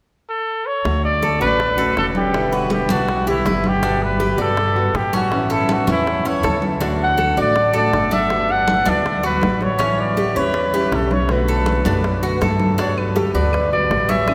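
Drenched in the long, wet reverb of a church or concert hall, this relaxed Cuban son and guajira passage in D major moves at 161 BPM, with an up-front trumpet carrying the melody from 0.3 seconds in a punchy, vintage pop style with light vibrato. Full-bodied fingerpicked nylon-string guitar with audible finger squeak, dark, thumpy pizzicato upright bass, and bright, metallic Cuban tres arpeggios on double strings are joined by ringing congas in the background and tight, high-tuned bongos played very quietly, while woody claves slip in only at 13.0 seconds. The chords drift from Dmaj7 through Em7, Gmaj7 and A7 to Bm7 before settling on Gmaj7.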